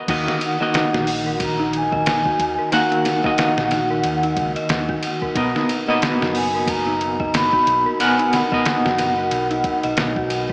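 Drenched in cathedral reverb and heard as if through a small speaker, this smoky, brooding trip hop excerpt sets an airy, distant baroque flute melody with dub echo over a bright semi-hollow electric guitar treated with tremolo and tape echo, eerie inharmonic synth bell arpeggios entering at 0.3 seconds, a round, punchy fingered bass, and a gritty, pitched-down sampler-style drum kit with a thumpy kick, swung sixteenths and a move from Eb minor to Bmaj7 at 5.4 seconds.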